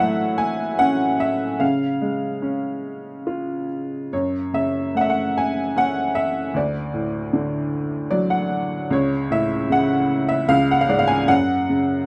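A worn, woody upright piano sits up front in a moderate studio reverb, its slightly detuned, boxy tone and long sustain giving this short cut from a longer classical piece a dark, melancholic air. Playing alone in a lyrical, rubato triple metre, the piano spans the low bass to the upper middle register. It adds a brief fill from 7.7 to 8.9 seconds before the passage moves toward its closing chords.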